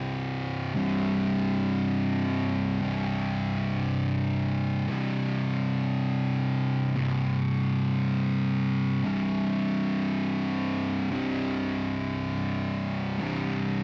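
Wet studio reverb surrounds a thick, dark fuzz guitar that sits up front, double-tracked and distorted as it plays alone for the full 13.8 seconds of this fragment from a longer piece. It is ominous, sludgy metal at a crawling 58 BPM in 4/4 with a swung eighth-note feel. The picked electric guitar stays low, between C2 and C3, and rests on a C5 power chord from the opening moment.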